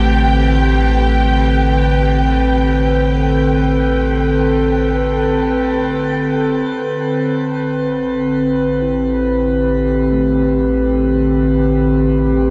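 Melancholic and reflective, this ambient cut from a longer piece drifts in free time in A minor, tuned to A4 = 442 Hz, resting on an Am11 chord. A warbly, tape-like pad sits up front with sustained, detuned chords, its slow attack and long release softened by chorus and its own reverb, giving a nostalgic lo-fi haze. Beneath it, a very quiet, muted synth with a felt-like touch plays intimate, decaying arpeggios, carrying a faint noise layer and a hint of ring modulation. A round analog bass holds a deep, slightly nasal low A throughout. A dark, woody violin section adds lush bowed texture with vibrato until it stops at 6.7 s, leaving the pad, keys and bass to carry the remainder under a moderate shimmer reverb with a 9.0-second tail.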